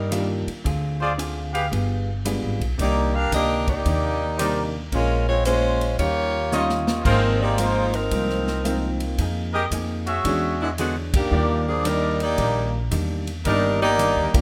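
Swinging and brassy, this short big band excerpt moves at 112 BPM in 4/4 with a firm swing feel, set in Eb major and passing through rich extended chords such as Cm9, Eb9 and E13 before landing back on Ebmaj7. A tight, close-miked saxophone section carries the melody up front with a clear tone and light vibrato, while a trumpet section enters at 1.0 seconds to punch in with clear stabs. Beneath them, a pizzicato upright bass on gut strings gives a woody, thumpy pulse, and a warm, woody upright piano and a dark, clean hollow-body electric guitar fill in the harmony, the guitar sitting back in the mix. The drum kit has an airy, polished sound, with a punchy kick, a medium-tuned snare, hi-hat, ride and crash, and it plays a fill around 6.5 seconds. The whole band hits accents at 11.1 and 14.3 seconds, all wrapped in a moderate large-studio reverb that gives the ensemble a roomy glow.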